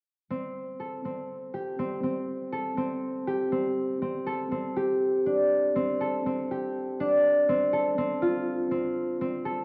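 A solo concert harp sits up front, its thumb-plucked arpeggios mellow and ringing as they move between C4 and A4. This short contemporary instrumental, cut from a longer piece, has a pensive, hypnotic mood, with a straight feel in 7/8 at 243 BPM counted in eighths, in A minor with the harp tuned to A4 = 439 Hz. The harp opens at 0.3 s on an Am7 harmony, and a second section begins at 3.8 s before the chord shifts to Csus4 at 7.2 s. A concert hall reverb with a 2.1-second decay surrounds the plucked notes, and the production leans dark and warm, giving the arpeggiated figures a soft, enveloping glow.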